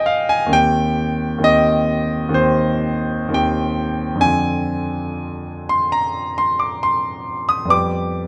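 The recording has an intimate, close sound, with detailed microphone placement and a light touch of reverb around a grand piano that sits up front, its tone warm and polished. This is a romantic classical nocturne for solo piano in C minor, with a yearning, melancholic mood. The tempo drifts between 56 and 71 BPM in 4/4, and the rubato feel lets the phrasing breathe freely. The piano spans a broad register, from C2 up to Eb6, and its tuning is set slightly high at A4 = 441 Hz. The harmony settles on C minor, shifts to Cm/Eb, darkens to Dm7b5/F at 4.2 seconds, and reaches G7/F at 7.7 seconds, just before this 8.3-second fragment of a longer piece breaks off.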